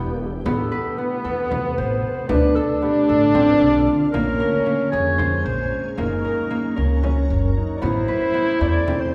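A restless, playful chamber piece in 7/8 at 228 BPM opens with a distant French horn carrying a second line with light vibrato, over a shimmering, detuned ambient pad, mellow fingerpicked harp arpeggios and a woody pizzicato upright bass up front. A deep, very quiet frame drum enters at 0.2 seconds, and at 0.5 seconds a dark, roomy solo clarinet takes the classical-style melody as the harmony moves from Amadd9 through Dm, Bbm7 and Gb before returning to Amadd9. The whole fragment sits in a wet recital hall reverb, as if recorded in a church or concert hall.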